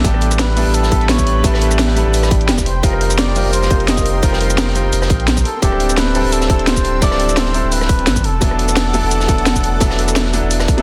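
The recording is dense and heavily limited, with light reverb and a studio ambience, in a short 10.8-second cut from a longer piece of dreamy, warm liquid drum and bass at 172 BPM in 4/4 with a slight swing on the 16ths. A cup-muted trumpet carries the jazz-style solo melody with a veiled, mellow tone, soft attack and light vibrato, touched by tape echo. A brilliant, polished grand piano accompanies it with long sustain and its own tape echo, while a thick, detuned unison pad holds sustained chords in the background, coloured by chorus and phaser and shaped by sidechain pumping. Underneath, a round sine sub bass sits up front, and three drum layers play throughout: a tight electronic kick, a produced kit with a cracking snare, hi-hat, rim click and cabasa, and a gritty, saturated breakbeat kit with a rolled-off top, filtered and tucked behind. The harmony moves through A9sus4, F9sus4, D9sus4 and E9sus4.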